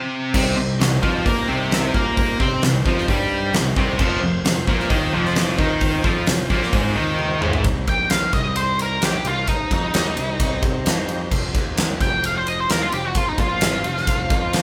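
A dark, fuzz-laden lead guitar with wah takes a solo from 7.9 seconds in this gritty, heavy excerpt of blues rock and southern rock at 131 BPM in C minor, moving between Cm and F5. Before it, a double-tracked distorted guitar riff leads up front over a huge arena drum kit with a punchy kick, fat snare and bright cymbals, and a growly, overdriven fuzz bass, with a drum fill just before the solo. Beneath them, a thick tonewheel organ holds very quiet sustained chords through a slow rotary speaker, all captured as a band playing live in one large, moderately reverberant room.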